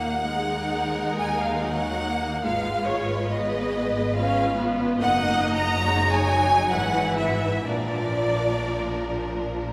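Classical string orchestra music in a slow, rubato romantic movement in 3/4, this elegiac, melancholic passage is cut from a longer piece and unfolds over a dark minor harmony that shifts through diminished and major colours before settling on a Bb chord near 7.7 seconds. A lush, expressive violin section carries the melody while a second, close and up-front violin section sings a higher line above it. A focused, clear viola section fills in the accompaniment, with a smooth-topped cello section in the background and a distant double bass section anchoring the bass, all bowed with vibrato and bathed in a wet church reverb.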